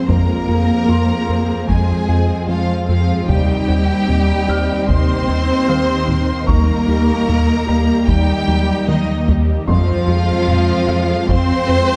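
This excerpt opens with a full string body, with violins carrying a smooth, lightly vibrato melody high above a lush second violin line, violas with soft attack and portamento, and cellos and double basses holding the low end. It is a tense, relentless cinematic cue blending orchestra and electronics, in F minor at 75 BPM in a straight 4/4, moving through Fm, Cm/Eb and Eb before returning to Fm at 9.7 seconds. A round, deep analog bass riff sits prominently under everything from 0.1 seconds, joined by a very quiet, tine-like synth pluck tracing arpeggios and a hollow, airy pad sustaining chords. A distant French horn section holds chords in the background, while a felt-muted upright piano adds intimate texture with audible action noise and a delay. A very quiet taiko ensemble struck with heavy sticks drives underneath, with a drum fill from 8.5 to 9.7 seconds. The whole is set in a wet concert hall reverb that gives the cue a broad, enveloping space.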